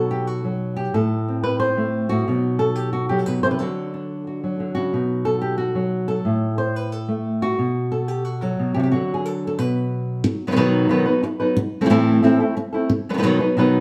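Intense and dramatic, this short flamenco passage moves at a brisk 180 BPM in straight 4/4, rooted in B phrygian dominant. A lone acoustic flamenco guitar carries everything from 0.0 to 13.8 seconds, fingerpicked and sitting up front with a warm body, ranging from A2 up to C5. The harmony circles around B, leaning on Am and D, with a brief chordless moment at 6.3 seconds and bare B5 shapes before a new section arrives at 10.2 seconds, returning to B, Am and B. A wet stone-room reverb gives the sound a sense of being heard from further back in the space, lending the guitar a resonant, echoing air. It is cut from a longer piece, so the music feels caught mid-flow.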